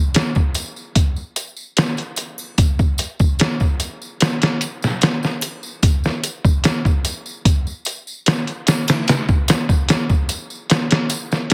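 A straight 4/4 trip hop groove at 74 BPM sets a dark, cinematic mood in this excerpt. From 0.1 s, a pitched-down, muffled, sampler-style drum kit sits up front with a thumpy kick, medium-tuned snare and hi-hat, while softer tambourine and triangle add close, dry acoustic detail beneath it, all wrapped in light reverb, digital ambience and a heavily compressed radio sound.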